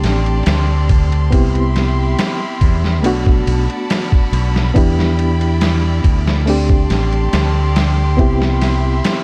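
A slow, straight groove in 4/4 comes from a sampler-style trip hop drum kit, its thumpy kick, medium-tuned snare, hi-hat and ride cymbal sounding compressed, pitched down and muffled, as if re-recorded in a small room. Sitting up front beside it, a fingered electric bass plays in a low register with a bright, punchy, direct tone. A reedy, clean electric piano supplies the accompaniment, colored by fast tremolo, a low-pass filter and tape echo. Above it, a studio violin section holds sustained bowed chords that are biting and intense yet smooth on top, with light vibrato. A layer of vinyl crackle hangs over this hypnotic, brooding excerpt as the harmony circles through D7sus4, Cmaj7, Bm7 and Em7.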